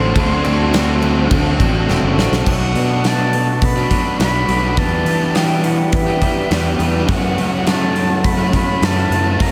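A straight 4/4 pulse at 104 BPM drives this wistful, blissful stretch of shoegaze and dream pop rock, cut from a longer piece. A huge arena drum kit enters at 0.2 seconds, up front in a pumping hall sound with bright cymbals, a medium-tuned snare and a punchy kick, and it plays a fill at 1.9 seconds before the harmony moves from D7 through Bm7 and Em7 to F#m7. An airy, close-miked concert flute carries the melody with vibrato, a soft attack and an expressive touch, trailed by delay, while a deep, moody analog pad holds slow-attack chords in the background under subtle chorus. A growly fuzz bass, fingered and overdriven, sits low and prominent, joined by several guitar riffs: a biting overdriven guitar with subtle chorus, a twangy, slightly broken-up guitar through a small old amp washed in reverse reverb, and a very quiet double-tracked overdriven guitar that drops out and returns at 7.1 seconds. 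Underneath, a very quiet twelve-string acoustic adds shimmering, boxy, octave-doubled arpeggios. The whole mix is dreamy and soaked in a huge ambient reverb.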